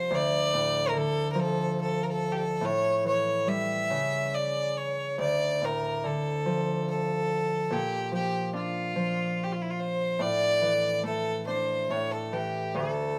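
A large studio's moderate reverb surrounds this 13.2-second Celtic slow air in D minor, cut from a longer piece and played live in one room at a rubato 71 BPM in 3/4, where a single bright, nasal fiddle with light vibrato carries the longing, mournful melody up front while a ringing, fingerpicked Celtic harp, also up front, accompanies through Dm, A7, Bb and a closing Asus4.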